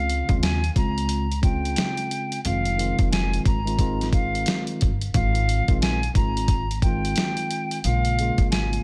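Boom-bap hip-hop at 89 BPM with a swung 16th-note feel, this short excerpt from a longer piece has a tough, gritty mood, moving through Dbmaj7, Fm7, Ab6 and Bbm7 with a section change at 5.1 seconds. Up front, a compressed, sampler-style soul drum kit with a thumpy kick, medium-tuned snare and hi-hat sits loudest, re-recorded in a large room and entering at 0.1 seconds. A woody pizzicato upright bass underpins a mellow, clean tine electric piano with cassette-tape coloring, while a distant concert flute carries the melody with a pure tone, crisp attack, expressive vibrato and digital delay, all in a dry mix.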